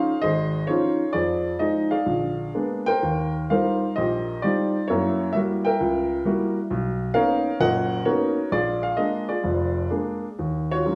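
Swinging and late-night, this solo jazz excerpt at 130 BPM in 4/4 features a woody, up-front upright piano playing with a rubato, swung feel across a range from F1 to G5, moving through rich chords from Dbmaj9 to Ebm11 over about 10.9 seconds in the wet reverb of a large studio.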